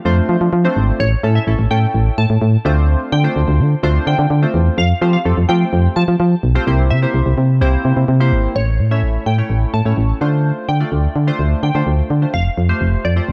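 This driving, bittersweet dance-pop excerpt runs at 127 BPM in D minor, with a punchy, round FM bass sitting up front beneath glossy, chorused retro synth keys that blend pulse-width-modulated and sawtooth tones through a filter sweep. At 1.0 seconds a glassy, crystalline wavetable pluck enters with the melody, its detuned unison warble coloured by ring modulation, chorus and tape echo. The harmony moves through Dm7, Fadd9 and C7 before a second section begins at 8.6 seconds, all set in a dark production with light reverb.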